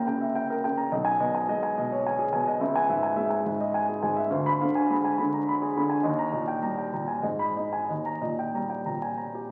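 Through the crackle of a very old 78 rpm record, a warm, up-front grand piano plays a bittersweet, passionate romantic character piece alone in G# minor, in a rubato 3/4 at roughly 89-109 BPM, spanning B1 to B5 and drifting through C# minor and a diminished chord before settling between G# minor and D# in a wet recital-hall reverb, in a 9.5-second excerpt cut from a longer work.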